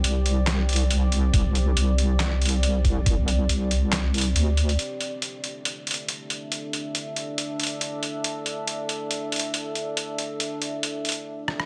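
A dense, heavily limited digital ambience frames this dark, heavy dubstep excerpt at 139 BPM, moving in a swung half-time feel. A deep, moody sawtooth pad with a sub octave, chorus and built-in reverb sustains mellow chords throughout, while an up-front, square-wave wobble bass, detuned and tube-saturated, rumbles until 4.8 seconds. Gritty, pitched-down, tape-toned sampler drums carry handclaps, hi-hat, rim click and a medium-tuned snare, a thumpy kick joins them from 1.3 seconds, and the passage closes with a break from 11.3 seconds and a drum fill at 11.5 seconds.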